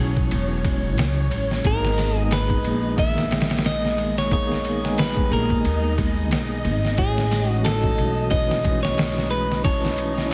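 Trip hop at 90 BPM in G# minor with a hypnotic, dark mood, this heavily compressed, radio-like excerpt sets a tremolo-laced tine electric piano with 12-bit sampler grit, phased and chorused string-machine cellos, a ringing, bright Celtic harp arpeggiating in the background through tape echo, and a woody pizzicato upright bass with tube saturation under an overdriven, pitched-down sampler-style drum kit up front from 0.2 seconds, while a tube shaker and triangle slip in at 1.6 seconds and a clean, picked electric guitar takes the melody from 1.7 seconds over chords moving from A to G#madd9 and back.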